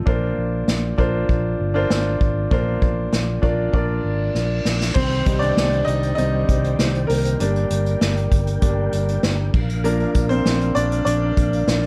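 A straight 4/4 pulse at 98 BPM drives this earnest piano-led pop passage in C minor, cut from a longer piece. An acoustic kit played with bundle sticks sits in a roomy studio space, with dark cymbals, a medium-tuned snare, a punchy kick and hi-hat, while a fingered, amped electric bass holds the low end. A clear, natural grand piano carries the accompaniment over a Bbadd9 opening, until a faint electronic reverse cymbal sweeps in at 4.1 seconds and a drum fill at 4.3 seconds leads into the next section. At 5.0 seconds the piano takes a solo over Cm, Gm and Bb, and a soft, flute-like tonewheel organ enters in the background with chorus vibrato and a slow rotary speaker. Moderate reverb and a dark production give the whole a driving yet warm character.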